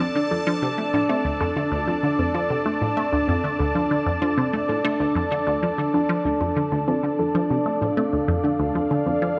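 From the opening, a bright, airy pad with a filter swell holds sustained chords up front, while a juicy, squelchy blip pluck plays a low riff through phaser and delay and a soft, round, dark pluck traces gentle arpeggios in the background. This cut from longer ambient space music has a cosmic, hypnotic feel in a straight 4/4 pulse, with the three chorused synths sitting in a wet concert-hall reverb and the tone of cassette tape.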